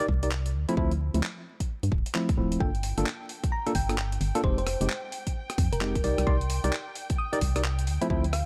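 Worn, slightly out-of-tune electric piano stabs with light overdrive open this bouncy, late-night two-step UK garage excerpt, riding over a hollow, dark FM bass with sidechain pumping, a punchy electronic kick, and a gritty, pitched-up breakbeat kit of handclaps, hi-hat and rim click in a swung groove, and at 2.6 s a round, mellow thumb-piano-like pluck with chorus and cassette-tape colour enters together with a softly pumping violin section with vibrato in the background, all in a dry mix dusted with vinyl crackle.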